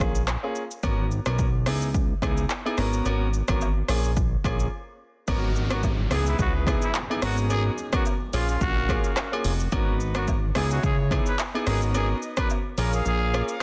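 Light reverb and studio ambience surround a dense, heavily limited modern master in this smooth, mellow afrobeats piece, cut from a longer track and moving at 108 BPM in G# minor with a gentle swing on the sixteenths. Up front, a punchy, overdriven deep house kit of kick, handclaps, hi-hat, rim click and shaker sits beside a fat, saturated analog bass built from detuned sawtooth, square and triangle tones with ring modulation and a filter sweep. A clear, open baby grand piano carries the accompaniment through minor seventh and eleventh chords, and close, dry agogo bells and woodblock join in the background at 0.8 seconds. After a brief break, the second section opens at 5.3 seconds with a warm horn section, vibrato-tinged and smooth on top, alongside an electronic downlifter tucked behind the mix. From 5.7 seconds a raspy, growling trumpet with light vibrato and delay takes the solo melody in a pop style, and the kick falls silent for the final half second.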